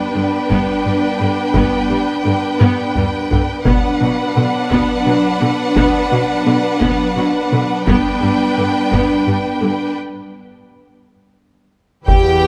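In 6/8, this brooding, tense hybrid orchestral and electronic film cue pairs close, dry taiko drums, which play fills, with a soft-attack violin second line, vibrato-laden violas, a hollow chorused pad and mellow background French horns holding chords until 9.9 s, while a rich cello section carries the bass through a break from 10.0 s before a focused violin melody and clear double basses arrive at 12.1 s, all in a detailed, lightly reverberant space.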